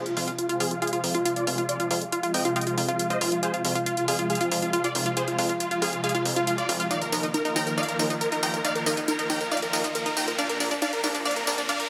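A straight 4/4 pulse at 138 BPM drives this bittersweet, euphoric uplifting trance build-up in F dorian, tuned to A4 = 436 Hz and cut from a longer piece. Up front, an overdriven kit of electronic hi-hat, tambourine and congas carries the rhythm, while a punchy, funky analog bass with a fast, decaying filter pluck and a touch of ring modulation plays beneath. A round, detuned analog pluck spins chorused, delayed arpeggios, and a silky, slightly nasal string pad holds evolving sustained chords through Fm, Ebsus2 at 6.9 seconds and Bbadd9 at 10.4 seconds. Over it all, a huge, compressed supersaw lead sings the melody with delay, its low-pass filter sweeping across the whole passage as a very quiet riser builds underneath. A moderate concert hall reverb gives the mix a sense of space.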